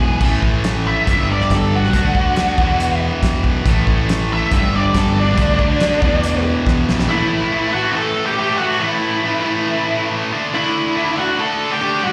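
A dark, fuzzed-out lead guitar solo opens this anthemic, cathartic slice of quiet-loud alternative rock. It rides over a bright high-gain guitar riff, a hollow-bodied overdriven guitar tucked in the background, a round fuzz bass and a loose indie drum kit with a fat snare and tight kick. Just after a drum fill, the semi-hollow guitar, bass and drums stop at 7.1 seconds, leaving the lead and the heavy riff guitar, both up front with slapback echo, to carry on until 12.1 seconds, all heard like a live gig through the venue's PA with recital hall reverb.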